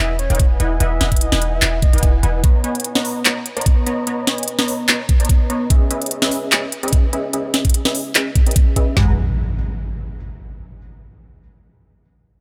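Future bass with a bittersweet, lush mood and a half-time swing, this cut opens with a soft, round octave-layered synth lead in the background and a punchy detuned supersaw stab riff under a filter sweep, both pumping with sidechain, while a deep, boomy 808-style bass drops out at 2.4 seconds, electronic trap drums with a knocking kick, woody snare, crisp hats, handclaps and toms sit up front, and an impact hits at 9.0 seconds over a shift to G#m7.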